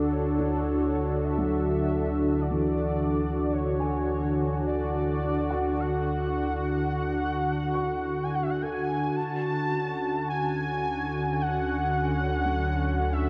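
In a slow, straight 4/4 at 53 BPM, this serene, peaceful ambient passage in D lydian, cut from a longer piece, rests on a Dmaj7 chord held by a bright, detuned sawtooth analog pad with chorus and tremolo sitting up front, while a round sine sub bass fades in beneath it, a velvety synth lead with vibrato, chorus, shimmer reverb and delay fades in from 0.1 seconds, and a boxy, felt-muted upright piano plays arpeggios with delay in the background from 0.4 seconds as it fades out, all set in a wet cathedral reverb.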